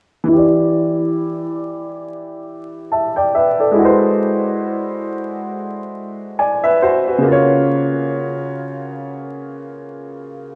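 A woody upright piano with long sustain sits up front from 0.2 s, playing a hazy, reflective hip hop accompaniment at 69 BPM with a swung 16th feel through Em7, G#7alt and C#6, its tone shaped by cassette-tape color, a low-pass filter and a filter sweep, all bathed in lush hall reverb with vinyl crackle in a rough home-demo mix cut from a longer piece.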